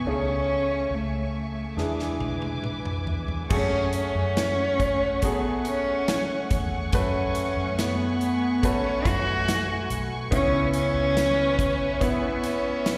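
This heartbroken pop ballad in F# minor, cut from a longer piece, opens with a dark, bowed solo cello carrying the longing melody. It is played sul tasto with vibrato and a soft attack, sitting intimate and up front, and trailed by slapback echo and delay. Beneath it, a clear, natural grand piano accompanies with its own slapback echo. A studio string section holds sustained chords with a smooth top, while a vintage, foam-muted fingered electric bass adds a round, punchy low end. At 1.8 seconds an acoustic, airy drum kit with a tight kick and a medium-tuned snare enters on a fill that runs to 3.5 seconds, as the harmony moves from Amaj7/C# through E7 to F#madd9 and later C#m7. At a slow, straight 70 BPM in 4/4, the sound carries the feel of a live gig heard through a venue's PA, with recital-hall reverb and light studio ambience.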